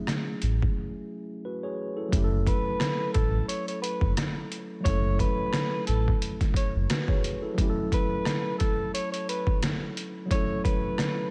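Boom-bap hip-hop in F# minor at 88 BPM with a swung 16th feel, this moody, dark excerpt rests on an F#m7 chord played by a mellow tine electric piano with a cassette-tape tint, over sampler-style drums that are pitched down, muffled and overdriven with a thumpy kick and medium-tuned snare, a deep, full sine sub bass with octave that sits up front until 6.9 seconds, and a breathy, subtoned tenor saxophone solo with light vibrato and tape echo entering at 2.5 seconds, all set in a light digital ambience.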